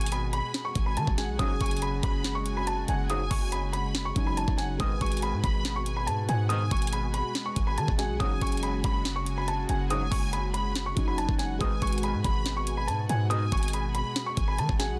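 Eerie and menacing, this half-time trap excerpt in G# minor moves at 141 BPM over a slow alternation between G#m7 and F#sus2. Up front, a knocking kick, sharp snare and metallic hats drive the electronic drum kit alongside a punchy, sine-based 808 bass with a noise layer and fast, decaying attack. Above them, a soft, vintage felt-muted upright piano carries the melody, while a distant, lush violin section with vibrato and delay adds a second line. Beneath these, a dark, boxy concert grand gives accompaniment and a detuned sawtooth pad with chorus holds sustained chords in the background. A soft-edged classical brass ensemble, also touched with delay, adds stabs from 1.4 to 13.4 seconds in a dry, dense, heavily limited mix.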